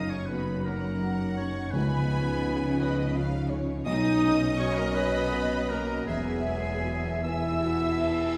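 A lush, distant violin section carries the melody in this hopeful cinematic excerpt, which unfolds in a slow, rubato 6/8 at around 51-56 BPM. A clear oboe and a dark clarinet sing second lines beneath it, joined from 0.7 s by a second, warm violin section and, at 7.3 s, by a pure-toned small flute group with a crisp attack. A soft, felt-muted upright piano sits intimately in the background alongside a very quiet viola section, while mellow French horns hold sustained chords. Focused cellos and expressive double basses anchor the low end, and timpani struck with hard mallets sound only until 2.8 s. The chords move from F#6 through C#add9 and Badd9 to Eadd9, and a concert hall reverb places the ensemble further back in the room, lending the uplifting passage a spacious glow.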